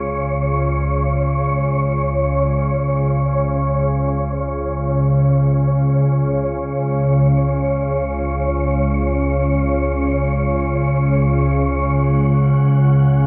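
Dark ambient drone in free time, desolate and cavernous, cut from a longer piece and lasting about 13.3 seconds. A calm, detuned organ-like drone with ensemble chorus sits up front in the low register, sustained with slow attack and long release, while a breathy, wind-like tuned noise texture hovers high above it, both carrying their own built-in reverb. The whole is bathed in a huge, wet ambient reverb, and at 11.8 seconds the harmony settles onto an F#5/C# chord.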